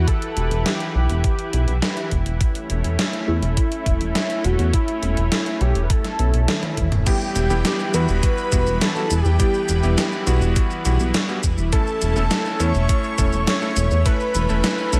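A thumpy, up-front electronic kick and a gated 80s digital drum machine with snare, hi-hat, shaker, toms and crash drive this straight 4/4 synthwave excerpt, and a drum fill with a faint electronic swell leads into the second section at 7.1 seconds. A glossy pulse-wave synth bass and a lush, detuned unison pad, both pumping with the sidechain, carry Emadd9 and A/E chords beneath a bold sawtooth unison lead with vibrato, chorus, tape colour and delay. From the second section, a clear electric grand piano adds stabs while a shimmering string-machine violin line sits in the background, giving the moody, driving cut a vintage gleam.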